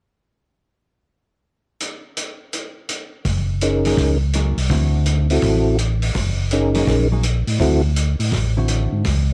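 A cassette-taped vintage drum kit opens this swinging, soulful soul jazz organ trio excerpt at 1.8 s, its hi-hat and punchy kick sounding rolled-off up top in a dry room. At 3.2 s a fat tonewheel organ bass with key click and slow rotary speaker arrives up front, soon joined by a soft, flute-like percussive organ melody with second harmonic percussion and chorus vibrato. A dark, compressed hollow-body electric guitar adds fingered accompaniment as the harmony moves between Gb69 and D9, all with the intimate character of a home cassette recording.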